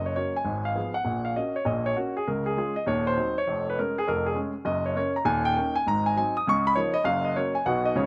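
Swinging eighth notes drive this brisk 4/4 stride jazz at 200 BPM, giving the fragment a playful, exuberant bounce in F# major, tuned to A4 = 441 Hz. A lone grand piano, polished and up front, spans Eb1 to D#6 over the whole 8.1 seconds, with a slapback echo on its sound. The progression runs through diminished passing chords to a D#7, G#7 and C#69 before settling on F# and moving to B, all captured dry in open air with little reverb.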